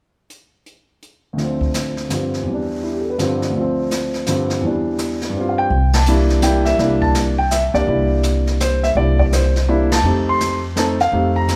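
A warm concert grand piano carries the melody up front in this swinging, playful jazz piano trio excerpt in 3/4, its deep bass and short sustain ringing through a moderate recital-hall reverb as the chords move between Dm7, Em7 and G7sus4 before settling on C9 and later F9. Brushes on a dark-cymbaled kit with a medium-tuned snare and boomy kick open the passage at 0.3 seconds, the piano joins at 1.3 seconds, and a woody, thumpy pizzicato upright bass with steel strings enters up front at 5.7 seconds. The full band hits accents at 5.9 and 9.9 seconds before the clip cuts off mid-piece.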